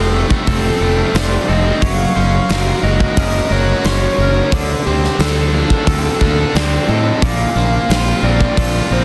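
Wistful and blissful, this short cut from a longer shoegaze and dream pop rock piece floats a reedy, woody FM lead melody with chorus, vibrato and tape echo over faint twangy clean guitar arpeggios, a biting overdriven guitar riff trailed by reverse reverb, a raw garage guitar riff tucked in the background, and an up-front fuzz-soaked fingered bass, while a huge arena drum kit with a punchy kick and pumping hall sound enters at 0.3 seconds, all set in a dense, heavily limited modern master with light small-room ambience.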